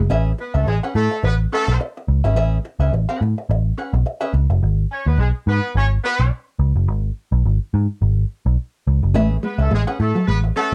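A round, foam-muted electric bass sits up front from the opening of this hypnotic, driving funk cut with a lightly swung sixteenth feel, soon joined by a hollow-body jazz guitar through wah that drops out at 4.5 seconds and returns near the end, a roomy horn section with light vibrato carrying a second line from 0.4 seconds, and a mellow, fingered electric guitar riff in spring reverb that comes back at 9.2 seconds, within a dark production moving from Amaj9 to G#m and back.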